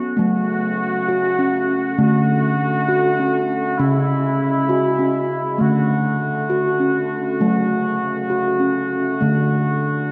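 Meditative world music in a gentle 6/8: a round, ringing steel tongue drum, bright and close-miked up front, plays arpeggios from the start, while a vintage brass ensemble with light vibrato enters at 0.2 seconds with sustained chords moving between minor and major harmonies, all soaked in a lush, dreamy hall reverb.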